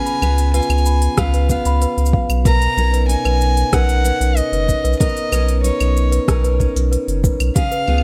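A floating, pure-toned solo violin carries the melody with a soft bowed attack and delay. It is set over a sweet, bell-like celesta second line with tape echo in this delicate folktronica piece in B lydian at 94 BPM, straight 4/4. Picked steel-string acoustic guitar arpeggios with an auditorium character play alongside a deep, round, mellow sub bass that sits up front, while an organic electronic kit of claves, crisp hi-hat, rim click and shaker is joined by a soft electronic kick at 1.2 s, both drum parts in studio reverb, as the harmony moves from C#7 to Bmaj9 at 2.5 s.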